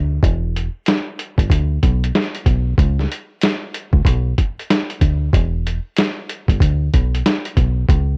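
A dark, round fingered electric bass with foam-muted, tube-saturated tone opens this reflective, gritty boom-bap hip-hop fragment in B minor at 94 BPM, joined at 0.2 seconds by an up-front, muffled sampler-style drum kit with a thumpy kick, medium-tuned snare and hi-hat swinging on the 16ths, all dry and coloured by the warbly pitch drift of worn old cassette tape.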